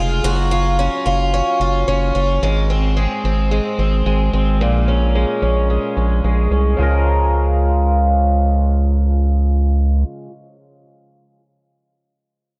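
Drenched in a lush hall reverb, this blissful, ethereal dream pop excerpt drifts in a spacious haze. Up front, a shimmering, octave-doubled twelve-string acoustic guitar plays picked arpeggios with a boxy tone, finger squeak and a gentle swing, colored by subtle chorus, analog delay and a low-pass filter that sweeps over it until 6.8 s, as the harmony moves through Gb5, Ab and Bbm7 before settling on Db6. Alongside it, also up front, a round, dark analog bass blends square and sine waves with wave-folded edges, its fast attack giving way to deep, sustained notes that last until 10.0 s.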